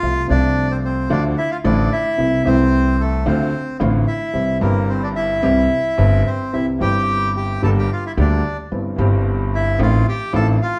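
A reedy, bright bandoneon sings the melody from the first moment over a woody upright piano and a plucked steel-string upright bass in this elegant, nostalgic tango excerpt at 111 BPM in a loose rubato 4/4, moving through chords like Dm, Gm and F7/A and set in a lush studio reverb that places the trio further back in the room until the bandoneon stops at 10.8 seconds.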